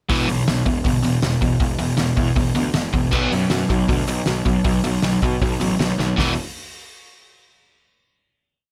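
A punk fast groove on a loose indie drum kit, with a fat snare, punchy kick and dark cymbals up front in a pumping room, drives this urgent, angry punk rock piece in straight 4/4. Two bright overdriven guitars chug palm-muted eighth notes in the background while a growly fuzz bass pushes driving eighth notes underneath, moving from E5 to B5 before a drum fill at 6.0 s leads into a final E5 chord with light reverb.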